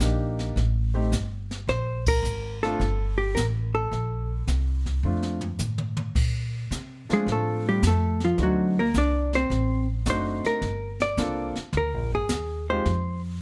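A dark, clean hollow-body jazz guitar carries the melody with plate reverb and takes a solo from 6.2 seconds in this swinging, sophisticated small-group swing and bop excerpt, backed by a clear concert grand piano, a woody pizzicato upright bass set up front, and an airy, polished brushed drum kit that plays a fill from 5.0 seconds after a band accent at 2.0 seconds.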